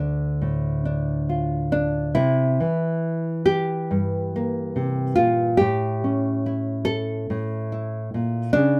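A dark, fingerpicked nylon-string guitar sits up front in this wistful, haunting folk piece, played solo in D minor at a rubato 70 BPM in 4/4, with classical touches, audible finger squeak and light reverb as it moves from Dm to C7 at 2.2 seconds and A at 5.6 seconds across an 8.8-second fragment cut from a longer work.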